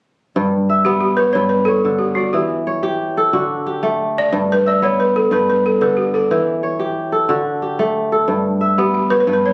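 Captured on a phone in a room with club-like reverb and compression, this flowing, warm fragment of West African traditional music in 12/8 opens at 0.4 seconds with an up-front, fingerpicked kora spinning crisp, ringing arpeggios over a G, Em and D cycle, joined at 0.8 seconds by a dark, woody balafon whose smooth, buzzing melody, struck with rubber mallets, sits dry and close beside it.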